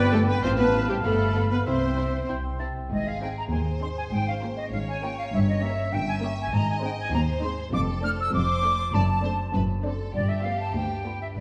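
This cinematic film cue is playful and whimsical, with a quirky, magical mood, moving at 99 BPM in a straight 2/4 in Ab major. A rich, distant violin section carries the melody with vibrato, while a clear, close second violin section sits in the background and a pure, bright small flute group plays an up-front, tongued second line. A solo oboe adds a classical-style line and a very quiet French horn section holds mellow sustained chords, both dropping out by 2.7 seconds and leaving the strings, flutes and harp. Underneath, a smooth, even viola section accompanies, a lush cello section and an expressive double bass section with portamento share the bass, and a concert harp plays ringing, thumb-plucked arpeggios in the background. The harmony moves through colourful chords such as Gdim7, D7/F# and G9, set in a wet scoring-stage reverb with a dark production.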